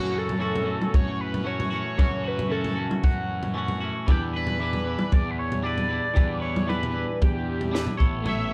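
Indie rock at 115 BPM in 4/4 with a straight, upbeat and jangly feel, this short cut from a longer piece moves from F#m7 to Em7 before landing on Aadd9 near the end. An overdriven synth lead carries the melody between F#4 and E5, its screaming, guitar-like sawtooth tone saturated and sustained, with vibrato and a phaser. Beneath it a twangy electric guitar plays a clean, compressed, picked riff that spans from F#2 up to C#5. A fuzz picked electric bass holds the low end with a dark, round, punchy overdriven sound. A compact cocktail drum kit comes in at 0.3 seconds with a punchy kick, a high-tuned snare and toms, sitting dry and a little forward of the other parts. The band sounds like it is playing live together in one room, with light reverb.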